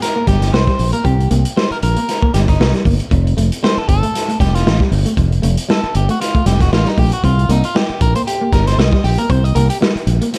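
A dark production with light reverb and small room ambience frames this cool, driving funk excerpt, set in 4/4 with a swung sixteenth-note feel. Gritty, saturated breakbeat drums with a tight kick and rolled-off top sit up front beside a fingered electric bass, direct and amped, that enters at 0.3 seconds. Two picked electric guitars at the edge of break-up play a higher accompaniment and a lower, compressed riff set in the background, while a clean electric guitar solo runs throughout over a C5 to Fadd9 and back to C5 progression.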